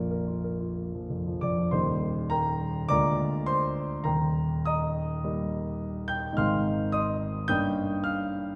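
A dark, mellow concert grand carries this brief romantic character piece alone, its deep bass anchoring a warm, lyrical mood across a range that reaches from the low bass up into the high treble. Played with flexible rubato in four, the piano sits up front yet is heard from further back on a wet, reverberant scoring stage, giving the sound a spacious glow. The fragment, cut from a longer work, moves through a short opening phrase before a new section begins at 1.7 seconds and flows through gentle harmonic turns until it breaks off at 8.6 seconds.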